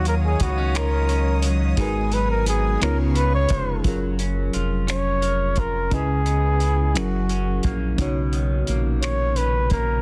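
Slow, tender six-eight R&B in which a breathy, whispered flugelhorn sings the melody up front with gentle vibrato, soloing through the opening 3.8 seconds while close, sul tasto chamber strings hold soft chords, all the while riding over a twangy, slightly broken-up electric guitar with harmonic tremolo, a warbling vintage FM electric piano, a round, deep analog bass, and a dry, cloth-damped drum kit of finger snaps, hi-hat and tight kick that play from the start, all in light reverb and a dense, heavily limited modern master.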